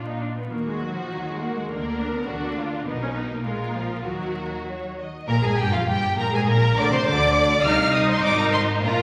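A wet scoring-stage reverb and a vinyl crackle surround this brief, spirited cut from a quick classical-period movement for string orchestra in Eb minor, moving at 101 BPM in 2/4 with a graceful, rubato feel. Two lush violin sections carry the melody and a second line, the supporting one sitting up front, while a clear, focused viola section adds accompaniment. Beneath them, a smooth, even cello section and a dark, close double bass section share the bass, all playing through the full 9 seconds as the harmony moves from Bb and Eb minor toward Gm7, Cm and Ab.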